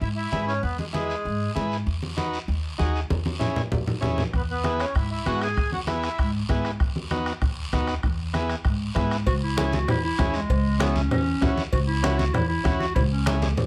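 Festive and danceable, this cumbia excerpt moves at a brisk 195 BPM in a straight 4/4, centred on E major with a shift to C#m as it closes. Woody pizzicato upright bass and raspy guiro run the full length, joined almost at once by a buzzy, overdriven combo organ with light vibrato and by warm, low-tuned congas played with hard hands. A reedy, up-front accordion carries the melody in two short phrases, the first at the opening and the second starting at 4.4 seconds, just after a drum fill brings in the soft-beatered bombo. At 9.3 seconds the music changes section as a clear, distant clarinet takes a jazz-style solo with vibrato and scooped notes, while ringing cowbell and timbales enter to brighten the groove. Light reverb gives the ensemble a modest sense of space, and a final drum fill arrives just before the cut.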